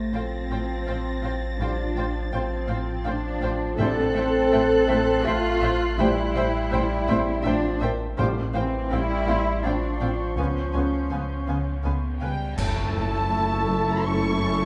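This uneasy, mysterious suspense film cue in triple time opens on mellow French horn chords, a clean sine sub bass drone and con sordino strings: veiled cellos and rich double basses hold the bass, a second cello section plays a riff, violas supply accompaniment, and lush violins carry the melody over a second line and a high texture, while a faint felt-muted upright piano adds intimate action noise. Warm trombones enter with sustained chords at 1.6 s, timpani with hard mallets strike twice, and from 8.2 s dark cymbal swells, clash cymbals and concert bass drum join in a reverberant scoring-stage space. The harmony shifts to a final chord as a band accent and a very quiet electronic impact land at 12.6 s, opening a brief closing section that carries on until this excerpt from a longer piece ends.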